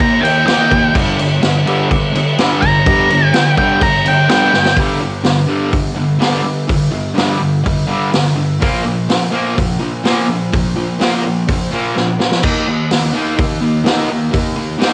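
Gritty and swaggering, this garage rock excerpt struts along at 126 BPM in G minor, with a dark, octave-fuzzed lead guitar taking a solo from the opening until 4.8 seconds while a bright, double-tracked fuzz guitar drives the riff up front. A vintage acoustic drum kit with punchy kick, dark cymbals and a rolled-off top keeps a straight 4/4 beat, marking the shift into the second section with a fill at 4.5 seconds and adding another around 12.0 seconds. Moderate spring reverb and the grit of a home cassette recording give the whole thing a raw, lo-fi edge.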